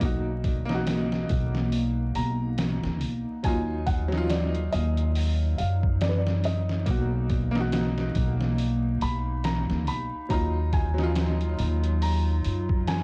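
A woody, gut-strung pizzicato upright bass with tube saturation sits up front in this dark, brooding trip hop excerpt, alongside a muffled, pitched-down sampler-style drum kit with a thumpy kick and overdrive, a brilliant upright piano accompaniment carrying tremolo, 12-bit sampler grit and tape echo beneath a soft, felt-muted piano melody that also has tape echo, and a warbling, detuned tape-like pad with chorus in the background, set in a dry mix dusted with vinyl crackle.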